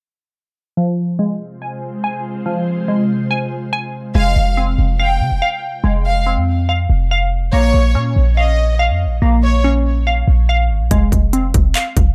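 Hip hop in a trap vein, this half-time excerpt carries an eerie, melancholic mood over a mostly dry mix. A glassy, crystalline wavetable pluck opens at 0.8 seconds with detuned, warbling arpeggios colored by chorus, tape echo and a filter sweep, while from 1.6 seconds an ethereal, airy pad with a slow attack and long release breathes sustained chords beneath it before dropping out at 4.1 seconds. At 4.2 seconds a deep, boomy 808-style bass arrives up front, dark and clean with a fast attack, alongside a warm chamber violin section playing a soft, intimate second line with light vibrato, bowed sul tasto and touched with tape echo. The harmony moves from F minor to B-flat minor and back, and the violins drop away before the final stretch. Only at 10.9 seconds does a trap drum kit kick in, pairing crisp hi-hats and handclaps with a hard-clipped kick that sits up front to close the passage.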